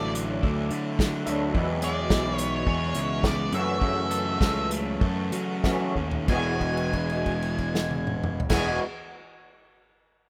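An excerpt from an upbeat, carefree indie rock piece in E mixolydian, opening with a dark, fuzzed-out lead guitar carrying the melody over a very quiet, shimmering retro pad of pulse-wave chords. Beneath them, a twangy guitar through a small old amp plays a slightly broken-up riff with ensemble chorus and tape echo, while a crunchy overdriven guitar adds a second riff in the background and a growly, bright fuzz bass holds the low end. An acoustic drum kit played with bundle sticks sits up front, with dark cymbals, a punchy kick and a medium-tuned snare, moving in a straight 4/4 between 92 and 108 BPM. The tempo slows from 1.5 to 6.3 seconds as the chords move from Dadd9 through Eadd9 to F#m7, and a drum fill at 6.0 seconds leads into the next section. There the music settles on Eadd9 with a held note, all in the rough, small-room sound of a home demo.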